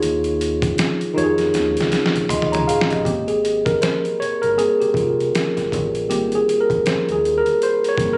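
R&B and neo-soul at a smooth, sensual 79 BPM with a lazy 16th-note swing in Ab major, this short cut pairs a worn, slightly out-of-tune tine electric piano, lightly overdriven through a combo amp and sitting up front, with a dark, round, punchy fingered dub bass and a gritty, pitched-down, overdriven boom bap sampler-style kit with a thumpy kick, medium-tuned snare, hi-hat and toms, all captured in a dry, compressed phone recording of the room, as a drum fill at 1.5 seconds leads into an electric piano solo from 3.1 seconds over the move from Eb9sus4 to Abmaj9.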